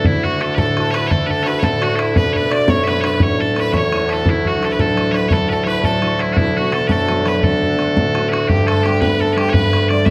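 Set in a moderate recital-hall reverb, this lively, rollicking Celtic folk jig in D major moves at 114 BPM in 6/8, with bright, piercing bagpipes up front carrying a continuous melody, a distant, biting fiddle adding a focused second line with light vibrato, a ringing, fingerpicked concert harp supplying accompaniment, and a boomy, open bodhran providing percussion, before the harmony turns to G at 8.5 s in this cut from a longer piece.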